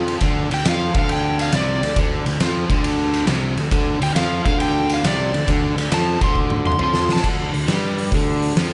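A big arena sound, softened at the top and wrapped in a moderate hall reverb, frames this gritty, smoky fragment of swung blues rock with a southern rock edge, cut from a longer piece. A crunchy, double-tracked overdriven guitar riff and a growly fuzz bass drive the groove from the start, under an up-front, oversized low-tuned drum kit with a fat snare, punchy kick and dark cymbals that adds a fill from 6.4 to 7.2 seconds. A warm, overdriven slide guitar carries the high melody with slapback echo from 0.5 to 7.3 seconds as the band moves into a new section.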